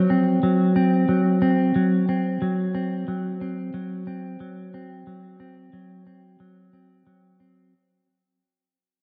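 A lush, wet hall reverb and a big arena sound surround this brief cinematic, melancholic rock passage, lifted from a longer piece, at 90 BPM in a straight 3/4. A clean, scooped semi-hollow electric guitar sits up front, fingering arpeggios between F#3 and C4 through analog delay and slapback echo. The whole 7.7 seconds is a fade-out.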